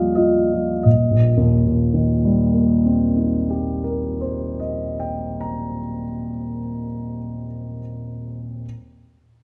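Impressionist classical solo piano in Eb major, hazy and luminous, drifts in a rubato 9/8 at roughly 26-34 beats per minute, with a concert grand spanning Eb1 to Bb5 heard up front, its deep bass, open tone and long sustain bathed in a wet scoring-stage reverb of about 2.0 seconds as the harmony settles from Ebmaj9 onto Eb6 in this brief fragment of a longer piece.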